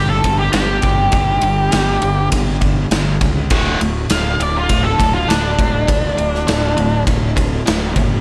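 A dark, fuzz-soaked lead guitar solo opens this sunny, driving classic rock cut at 101 BPM, its wah-coloured, delayed melody riding over a biting, double-tracked overdriven riff guitar set back in the mix and a round, punchy fuzz bass played with the fingers. A gated 80s drum kit joins at 0.2 seconds with a punchy kick, medium-tuned snare and bright ride cymbal in a stone room, while the harmony moves from G5 to D5 at 3.5 seconds. The lead guitar drops out at 7.0 seconds, leaving the riff, bass and drums to carry the final moments.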